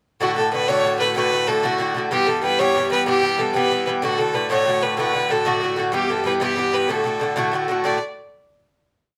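Celtic folk jig in 6/8 at 126 BPM in D major, cheerful and bright, with an up-front fiddle playing a clear, airy-bowed, motif-based melody with light vibrato over a metallic, double-strung Irish bouzouki driving strummed open chords that move between D and Em in a wet studio reverb, both playing from 0.2 to 8.0 seconds as this short, complete piece resolves on a final D chord.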